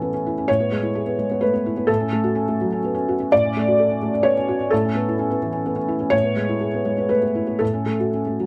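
Intimate and peaceful, this short excerpt of neoclassical minimalist piano moves in a rubato 3/4 at around 115-130 BPM. A felt-muted upright piano plays alone for the full 8.5 seconds, its soft, mellow tone sitting up front with audible action noise, ranging from A2 to D5 under light reverb. The harmony drifts gently between E/A, F#m/A and Aadd9, all resting on an A in the bass.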